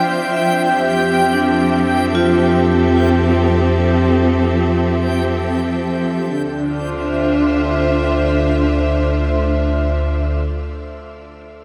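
In a straight 3/4 at 54 BPM, this reflective, spacious ambient excerpt in D minor places a rich, bowed studio string section up front on smooth sustained chords moving from Fmaj7 to Dm7 at 6.3 s, above a deep, ominous rumbling drone that enters at 1.2 s, while a reversed, dreamy swelling texture hovers high until 6.3 s and a metallic, ringing vibraphone played with hard mallets spins arpeggios in the background through diffuse ambient delay, fading out over its first 6.3 s, inside a wet shimmer reverb.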